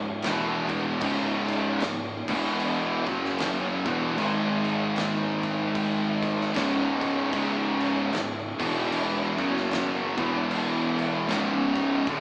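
Heard as a band playing live in a stone room with moderate reverb through a small speaker, this heavy, sludgy stoner and doom metal excerpt at 76 BPM in C# minor swings its 4/4 riff on an up-front, high-gain, double-tracked guitar backed by a thick fuzz guitar and a growly, overdriven picked bass, while an oversized low-tuned acoustic kit with a punchy kick, fat snare and dark cymbals enters at 0.2 seconds, and a very quiet, tense, detuned string-like drone holds sustained chords from 8.6 seconds.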